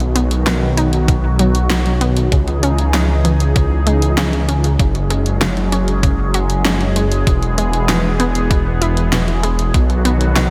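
Synthwave with a nostalgic, nocturnal mood, this short cut from a longer piece moves at a steady, straight pulse in 4/4. A swirling phased analog pad holds sustained chords throughout, its slow attack and long release treated with chorus and pumping against the sidechain, while the harmony shifts from B through C#madd9, F#sus2 and E before returning to B. Sitting in the background, a round, bright analog pluck spins arpeggios colored by chorus and tape echo. Underneath, a thick, detuned saw bass sits up front with a saturated yet mellow tone. A layered pop drum kit supplies hi-hat and a fat snare bathed in gated reverb, and a thumpy electronic kick drum enters at 1.1 seconds and drops out at 9.9 seconds. Light reverb and digital ambience give the mix a nighttime sheen.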